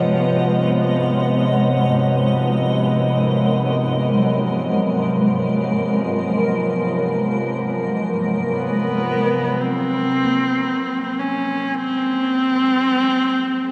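Ambient in free time, ominous and unsettling, this excerpt from a longer piece unfolds in a vast, echoing cathedral-like space: an up-front granular cloud pad of blurred, evolving chords with shimmer reverb sits over a tense, bright bowed-like drone with vibrato and a breathy, wind-like tuned noise texture in the background, the drone and wind ending around 9.7 seconds. A soft bronze singing bowl struck with a felt mallet enters at 4.2 seconds with slow-beating, metallic arpeggios through delay, and at 8.5 seconds a husky, focused horsehead fiddle takes the melody up front, a single bowed player with vibrato and portamento wrapped in shimmer reverb and delay, as the harmony moves from Abm to Fm.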